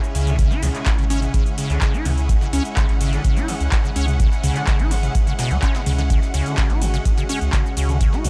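Acid house at 126 BPM in C# minor, this short cut from a longer piece feels hypnotic and driving, sitting on a single C#m chord for its 8.3 seconds. A deep, tape-warm electronic kick sits up front from 0.4 seconds, joined by a booming analog drum machine with overdriven, metallic hats, handclaps, ride, shaker and toms, plus a very quiet, pitched-up breakbeat kit of hi-hat and a medium-tuned snare. The squelchy, hollow square-wave acid bass carries the riff with resonant filter plucks, colored by analog chorus and tape echo, while a round sine sub bass with tube saturation holds the low end. Above, a warbling, nostalgic pad of detuned sawtooth and triangle tones sustains chords with chorus and its own reverb, and a lush bowed string section adds smooth vibrato texture. The pad, strings, acid bass and sub all carry sidechain pumping, and the overall sound is dry and gritty, like a hardware recording.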